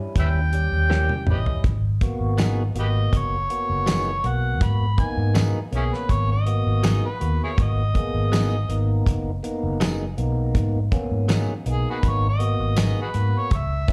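A straight-eighth groove at 81 BPM in 4/4 drives this brooding, soulful soul blues cut from a longer piece, heard as a live club gig in a small room: a dry 70s drum kit with a fat snare and tight kick sits up front beside a round, punchy, foam-muted fingered electric bass, a twangy, compressed clean guitar recorded direct adds picked stabs from 0.9 s, and a lightly overdriven tonewheel organ with slow rotary speaker moves from D#7b9 to G#m7, as a gritty, amplified harmonica with slapback echo takes a jazz-style solo from 1.6 s full of tongue slaps, scooped notes and light vibrato.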